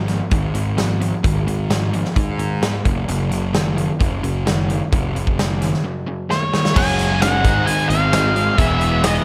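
A swaggering, driving classic rock excerpt at 130 BPM opens with two overdriven guitars playing a riff, one crunchy and very quiet, the other a hollow-bodied semi-hollow in the background, over an up-front, growly fuzz bass and a punchy, natural big-room drum kit of kick, snare, hi-hat and crash. A drum fill at 6.3 seconds brings in a dark octave-fuzz lead guitar melody up front, with a very quiet second fuzz line beneath it, as the harmony moves through Gbsus2, Ab and E. From 6.7 seconds a gritty tonewheel organ with slow rotary sits barely audible underneath, and at 6.8 seconds a woody upright piano with audible action noise joins in the background, all under light reverb.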